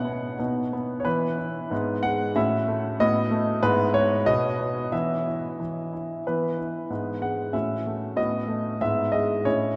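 Classical-period piano sonatina in E major at 93 BPM in 2/4, playful and graceful with rubato phrasing, a solo grand piano sounds intimate and up front with audible action noise, ranging from G#2 to F#5 and bathed in a cathedral reverb whose 4.8-second tail fills a vast, echoing space, as its opening phrase returns at 6.3 seconds in this short cut from a longer piece.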